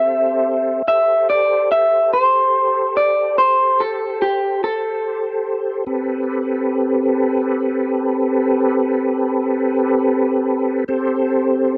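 A slightly broken-up, lo-fi electric guitar through a small old amp sings a mournful melody over a clear, clean tonewheel organ holding an Am9 chord through a slow rotary speaker with chorus vibrato, a brooding minor blues in 12/8 at 48 BPM, cut from a longer piece and captured in a dry, close 1970s-style studio sound, where the guitar falls silent at 6.3 seconds and the organ sustains alone until 11.8 seconds.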